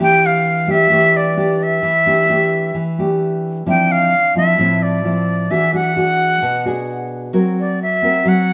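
Smooth and melancholic, this short bossa nova passage runs 8.5 seconds and is lifted from a longer piece, moving in a straight, even 4/4 feel. A breathy, bright concert flute carries the melody with a straight tone and tongued notes, staying between D5 and G5, and its line sounds slightly unsteady. Beneath it, a classical nylon-string guitar with fresh strings provides thumb-plucked accompaniment from A2 up to A#4, its acoustic sound warm. Both instruments sit up front and play throughout, framed by a moderate large-studio reverb that lends a roomy sense of space. The harmony moves from A7sus4/E to Dm9 at 3.7 seconds, then through E9 to a closing F#7#11.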